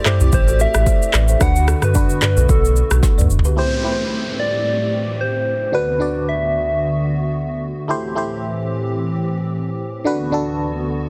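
A soft, keys-like synth lead carries the melody over a biting FM electric piano with phaser and tremolo and a hollow, flute-like pad in this smooth, hypnotic afrobeats excerpt, as a woody balafon riff sits in the background and an overdriven afro-pop drum kit with deep kick, handclaps and shaker drives alongside a full sub bass up front, until a drum fill closes their run at 3.6 seconds and an electronic downlifter enters over chords that cycle between Am7 and D6 in a dense, dry, heavily limited mix.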